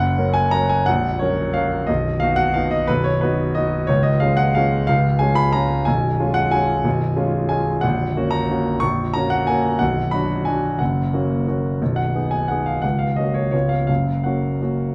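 Elegant and playful, this short classical piano waltz moves in a lilting three-beat metre with a flexible, rubato feel that lets the phrases breathe. A clear grand piano plays alone from start to finish, sitting up front with a natural, unadorned tone that spans from the deep bass to the upper treble. The harmony centres on its home key of F# major, passing through brief shadings such as a borrowed minor chord near 9.8 seconds before settling back home by 13.9 seconds. The production leans dark and warm, and a moderate studio reverb gives the instrument a sense of a large room around it. Cut from a longer piece, this 14.9-second passage captures a single graceful phrase of the dance.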